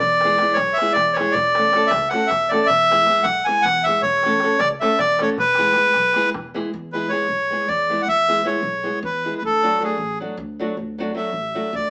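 Balkan folk in the spirit of a wedding band, this exuberant, wild excerpt from a longer piece races along at 313 BPM counted in eighths, in a straight 7/8 in E mixolydian. A reedy single-reed accordion with dry tuning carries the melody, clear and up front, and at 6.7 seconds it moves into a solo that runs to the end at 11.9 seconds. A dark, fingerpicked nylon-string guitar supplies accompaniment with audible finger squeak and a small body. Further back, a woody pizzicato upright bass on steel strings holds the low end, while a crisp metal-shell darbuka, played close with soft hands, adds percussion until 6.7 seconds. The harmony moves between E and F#m, touching D near the close. The band sounds like it is playing live in one room, with a moderate large studio reverb and a small-speaker character.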